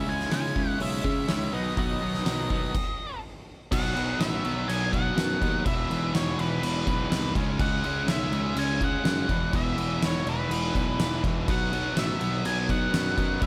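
Quiet-loud alternative rock at 124 BPM in a straight 4/4, this short excerpt feels bittersweet and restless as it moves from C# minor through B toward suspended and open power-chord harmony. A dark, fuzzy octave-fuzz lead guitar carries the melody throughout, while a bright, twangy, clean twelve-string electric guitar plays very quiet, compressed arpeggios only until 2.7 s, when a stop holds until 3.7 s. Beneath them, a bright overdriven electric guitar and a dark, hollow-bodied overdriven semi-hollow guitar in the background share a low riff, and a growly, direct picked electric bass anchors the bottom. The oversized low-tuned drum kit enters at 0.2 s, saturated and gritty, up front with a punchy kick, fat snare, dark cymbals, hi-hat and crash in a bright, pumping stone room. Light reverb surrounds the parts as the second section runs from 3.7 s to the cut.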